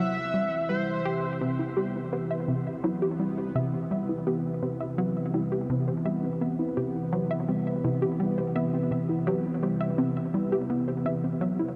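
A steady, straight 4/4 pulse carries this short cut from a longer piece of ambient, sequencer-driven space music, its mood luminous and cosmic. From the start a punchy, funky analog bass riff with a fast-attack filter pluck and mellow decay runs almost the whole way, echoing through delay, while a sweeping, resonant pad holds slow-attack sustained chords up front, its sawtooth body thickened by a sub octave, a filter swell and chorus. A shimmering, retro pulse-width lead sings a brief vibrato melody with chorus and delay, then stops at 1.4 seconds. At 1.6 seconds a warbly, dusty pluck takes over with lo-fi, detuned arpeggios that carry a noise layer, chorus and delay. Everything sits in a huge, wet ambient reverb, and the production is dark and warm in tone.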